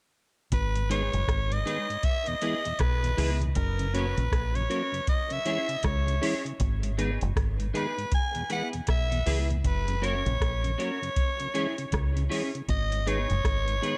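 Serious and meditative, this roots reggae excerpt moves at an unhurried 79 BPM in G# minor, with a swung sixteenth-note feel and a tuning slightly below standard pitch. A raspy soprano saxophone carries the melody up front, its gritty, edgy tone shaded with vibrato and trailed by dub echo. Beneath it, a deep dub fingered bass sits round, dark and punchy, while a soft vintage rhythm box supplies a deep kick, metallic hi-hats and rim clicks. A mellow tonewheel organ enters at 0.8 seconds with audible key click and a slow rotary speaker. A clean, bright, twangy electric guitar joins at 0.9 seconds, treated with analog chorus and also sent through dub echo. The chords cycle through G#m, E, F# and C#m before returning to G#m as a new section begins at 12.7 seconds, all set in a digital ambience.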